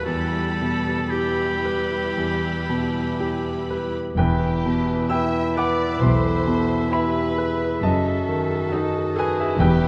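A slow rubato 4/4 pulse, drifting between 57 and 69 BPM, carries this brooding, tragic classical excerpt in E minor, tuned to A4 = 439 Hz. A clear grand piano with long sustain leads the melody up front, joined on the melody by a lush violin section with vibrato and a soft attack, while a solo oboe in classical style and a second violin section in the background trace second lines over a rich bowed viola accompaniment. At 4.2 s the texture deepens: a distant, hollow flute and a warm clarinet add further second lines, a French horn section holds sustained chords in the background, and a very quiet, focused cello section joins an expressive double bass section on the bass. The harmony rests on E minor before turning to D#dim/F# at 7.8 s. At 9.6 s timpani struck with hard mallets enter, close and dry, just before the cut. A moderate concert hall reverb gives the whole ensemble a spacious, resonant setting.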